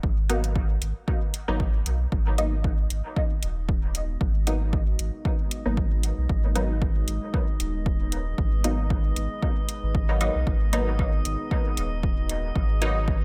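Dub techno in a nocturnal, hazy mood, this short cut from a longer piece rests on a single G#m7 chord throughout. A punchy, overdriven electronic kick sits up front from the start alongside a round, sine-based sub bass that pumps against it, with swung sixteenths giving the groove a gentle lilt. Metallic, overdriven hi-hats join at 0.3 seconds together with a muted, detuned filter-pluck chord stab, whose fast attack and short decay are smeared by chorus, phaser, cassette tape color and dub echo. A glassy texture of drifting overtones enters at 2.9 seconds, and a dark, slow-attack pad with a sub octave follows at 3.5 seconds, both soaked in their own reverb and breathing with the sidechain. The overall room stays dry, letting the deep low end and the hazy upper layers sit in clear contrast.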